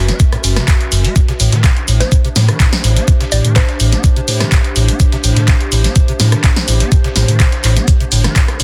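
A punchy analog drum machine with handclaps, rim clicks and hi-hats, re-recorded in a large room, opens this hypnotic, raw acid house excerpt at 125 BPM in straight 4/4. A thumpy, up-front electronic kick follows a moment later to drive it, while a gritty, high-passed soul sampler-style kit with shaker sits in the background. A squelchy, resonant square-wave acid bass riff with filter sweeps and a deep sine sub bass pump against the kick over F#m7 and Am7, beneath a warbling, nostalgic lo-fi pad drenched in chorus, phaser and reverb. From 2.0 to 3.9 seconds a woody, mallet-like FM pluck flickers through dub echo, all in a dense, heavily limited modern master.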